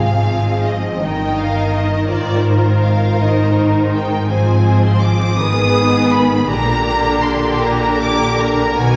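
Lyrical and tender, this slow romantic movement for string orchestra unfolds in a lilting 6/8 with a flexible, rubato feel, cut from a longer piece. A bowed violin section carries the melody with focused vibrato and a smooth top, while a second violin line sits beneath it, even and smooth. The violas, rich and up front, fill out the accompaniment, and cellos and double basses share the bass, the basses adding a woody depth. All five sections play together from 0.0 to 9.0 seconds as the harmony moves from Ab through Eb/G, a darkening turn to Abm, and on to Bb. The ensemble is heard from further back in a wet scoring stage, its reverb lending the strings a soft, enveloping bloom.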